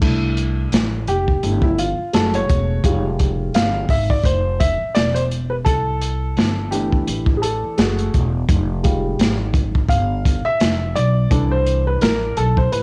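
A dark, mellow upright piano leads this jazz-hop excerpt, playing solo for its full 12.8 seconds with a vintage character and sitting up front. Its chords move from C6 through F#madd9 and Fmadd9 back to C6, a cycle heard twice in C major. Underneath, a pizzicato upright bass with steel strings gives a woody, growly low end, also placed up front. The crunchy breakbeat kit of kick, snare, hi-hat and crash is saturated and gritty, with dark cymbals, a tight kick, a medium-tuned snare and a rolled-off top. At 85 BPM in 4/4 with a 58% swing on the sixteenths, the hip hop groove feels warm and smooth, framed by the small-room ambience of a home cassette recording.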